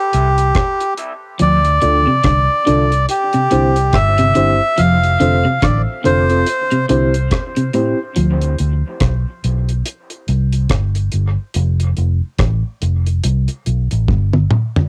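A home cassette recording with light reverb gives this dub reggae fragment, cut from a longer piece, a heavy, deep atmosphere over a swung 4/4 groove. A dry, close-miked melodica carries the melody up front with a breathy, nasal tone and dub echo, playing until 6.9 seconds, while a very quiet, dark electric guitar adds clean, fingered accompaniment only in the opening second. Underneath, a vintage foam-muted fingered bass sits prominently, round and punchy with tube saturation, and a deep reggae kit with a tight kick, hi-hat, rim click and toms runs throughout with a cassette-tape character. From 1.4 seconds a bright, twangy guitar at the edge of break-up plays compressed, picked arpeggios, joined by a reedy electric piano whose mellow stabs pass through fast tremolo, a high-pass filter and dub echo. After 8.2 seconds the track drops into a stripped break of bass and drums that ends with a drum fill.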